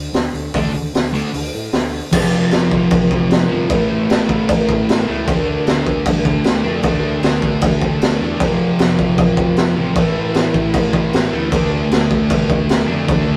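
The fuzzy electric bass sounds first at 0.0 seconds, round and overdriven but sitting in the background of this gritty, swaggering garage rock clip, cut from a longer piece. The raw drum kit comes in almost immediately, then the thick fuzz guitar at 0.5 seconds, and the three carry on together at a driving 153 BPM in a straight 4/4 until the drums stop at 13.2 seconds, with bass and guitar running on to the end at 13.4 seconds. The guitar is bright, double-tracked and up front, churning out a distorted riff built on D5, F5 and A5 power chords in D minor. The drums are mid-forward and saturated, with a high-tuned snare, a boomy kick, crash cymbal and hi-hat, and a rolled-off top that gives the kit a small-room crunch. After a brief opening passage, the music shifts into a longer section at 2.1 seconds that cycles the same chord movement twice. Light reverb and a rough rehearsal-room sound keep the whole take loose and immediate.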